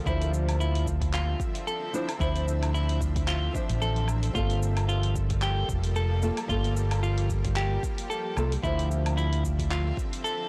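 A swung sixteenth-note groove at 112 BPM in 4/4 drives this wistful, warm sunset chillout excerpt in G dorian. It is carried by a deep, overdriven electronic kick and a deep house kit of cabasa, handclaps, hi-hat and woodblock, both layered and re-recorded in a small room. Up front, an amped fretless electric bass holds the low end, while a small-bodied nylon-string guitar with fresh strings and audible finger squeak plays fingerpicked accompaniment through analog delay. A dark, scooped clean electric guitar picks compressed arpeggios between E4 and A4, also fed into analog delay. Beneath them, a shimmering, ethereal pad of detuned sine tones with octave-up shimmer, granular texture, chorus and its own reverb sustains the chords, moving from Dm9 at 0.1 seconds to Gm9 at 4.4 seconds and back to Dm9 at 8.6 seconds. The recording is dry overall, with transformer saturation and cassette tape lending the hardware sound its grit.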